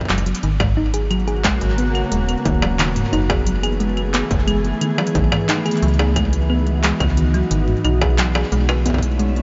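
A straight-time pulse drives this short, melancholic and cerebral slice of IDM, built on a distorted electronic kick and an industrial kit of claves, handclaps, smooth hi-hats and struck metal treated with delay, both re-recorded in a small room. Underneath, a metallic FM bass with a fast attack sits up front, its digital tone decaying after each note. A round, tine-like synth pluck with a thumb-piano character spins gentle arpeggios colored by chorus and tape echo, its dark, full-bodied sound carrying a faint noise layer. From 1.1 seconds a glassy, ethereal FM pad fades in on slow-attack sustained chords with ensemble chorus and a long release, moving through minor eleventh harmonies. The whole mix is dreamy and soaked in a huge ambient reverb, with a soft, rolled-off top end that keeps it hazy and introspective.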